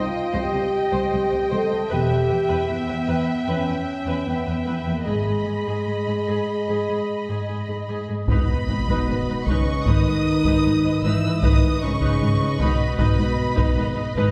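Heavy-stick taiko drums strike in at 8.3 seconds, followed by a huge but very quiet sub drop, with a dark, close-miked trombone section in the background, lifting this dramatic, brooding cinematic orchestral cue, cut from a longer piece, where a distant, roomy French horn section sustains chords over lush, expressive bowed cellos and a double bass section with portamento, while rich violas and a focused violin line shimmer with vibrato beneath a smooth, even violin melody that enters high at 8.3 seconds, the ensemble set back in a wet scoring-stage reverb.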